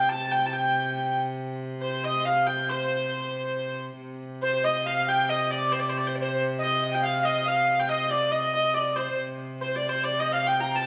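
A clear, biting hurdy-gurdy carries the melody up front over a rich, softly vibrating viola da gamba drone on C3 in this ancient, mysterious medieval dance in C dorian at 138 BPM in 3/4, with a breathy, bright tenor recorder adding a chiffy second line from 4.4 seconds, all set in the wet reverb of a recital hall.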